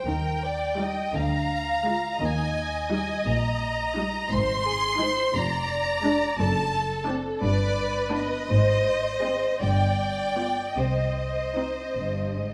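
Heard in the moderate bloom of a scoring stage, this solemn, melancholic fragment of a slow romantic movement for string orchestra in 6/8 unfolds with rubato, as an up-front, focused violin section sings the melody with vibrato over a second violin line of soft attack and smooth top, while smooth, even violas enter at 0.8 s, distant cellos with portamento and rich double basses carry the bass, and the harmony moves from E-flat through G7 to a closing C minor chord.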